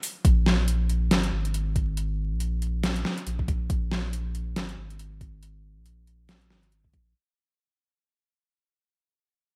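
An overdriven, knocking electronic kick sits up front in this dark, cavernous deep dubstep fragment, moving at 139 BPM in a half-time 4/4 feel with a 58% swing on the 16ths. Beside it, a layered, overdriven drum kit brings a deep snare, metallic hi-hats and a shaker with the close character of a small room, while a thick, saturated triangle-shaped sub bass with a fast attack holds sustained notes between Ab1 and Bb1. The dry mix has a bright 1980s-style digital sheen flecked with vinyl crackle, and the whole cut fades out from 0.2 to 7.2 seconds.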